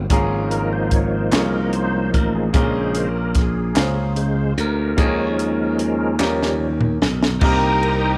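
Lightly reverberant studio sound with a faint mains hum frames this jubilant, soulful slow gospel excerpt in 6/8 at 49 BPM, where a reedy tonewheel organ with key click, slow rotary speaker and chorus vibrato takes a solo over clear baby grand piano accompaniment, a growly, up-front slap bass, an airy, polished fusion drum kit with a high-tuned snare and punchy kick that plays a fill from 6.2 seconds, very quiet hollow group handclaps, and a lush, bowed string section that enters with the melody at 7.4 seconds, over chords moving from Db6/Ab through Bbm7 and Eb7sus4 to Eb7 and Cm7.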